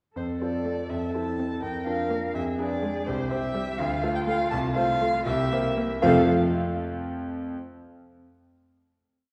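Spirited and cheerful, this brief classical-period movement for piano quartet in F major moves at 82 BPM in a straight 6/8, with a rich, expressive violin carrying the melody up front with vibrato and portamento, a clear, smooth cello adding a counter-melody and sustained chords, a focused viola in the background playing pizzicato accompaniment and sustained chords from 0.7 seconds, and a bright, brilliant grand piano supplying syncopated chords that ring alone on the final F chord until 7.6 seconds, all heard from further back in a wet concert hall.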